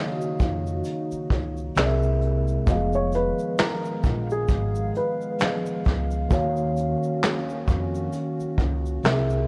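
Worn, warbling cassette tape with pitch drift and light small-room reverb colours this melancholic, reflective lo-fi hip hop excerpt, swung at 66 BPM in Eb minor. A soft, thick-felt muted upright piano carries the melody until 5.6 s over a mellow, clean tine electric piano and a dark, detuned analog pad with slow attack and chorus, while a woody pizzicato upright bass with transformer saturation enters at 0.4 s. An up-front vintage brush kit of kick, snare, hi-hat, handclaps and shaker, its top end rolled off, sits beside a grainy tube shaker in the background as the chords move from Ebm9 through C7b13 and Fm7b5 back to Ebm9.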